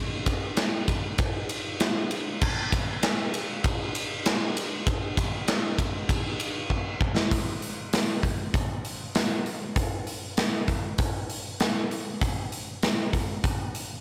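Rock drums carry this driving, heavy passage cut from a longer piece, moving in a straight 4/4 feel. A big acoustic rock kit is the only part, entering at 0.3 seconds and playing until 13.9 seconds, with kick, snare, hi-hat, ride and crash cymbals. The kit sits up front with a mid-forward character, pairing a tight kick with a medium-tuned snare. A drum fill at 6.7 seconds marks the move into a second section at 7.3 seconds. The kit is heard in a big room, framed by a moderate scoring-stage reverb that gives it a spacious sound.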